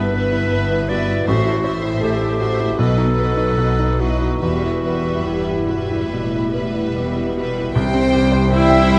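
In a rubato 4/4 at 70-81 BPM, this tragic, brooding romantic movement in E minor features an intimate, up-front grand piano with audible action noise carrying the melody alongside a warm violin section, a close-miked solo clarinet and a second violin line, lush bowed violas, cellos and double basses in the background, a barely audible dark cymbal swell and tam-tam from 4.4 seconds, and a band accent at 7.8 seconds where punchy French horns and tight trombones bring sustained chords before an airy flute section and a very quiet oboe join at 8.5 seconds, all in light reverb.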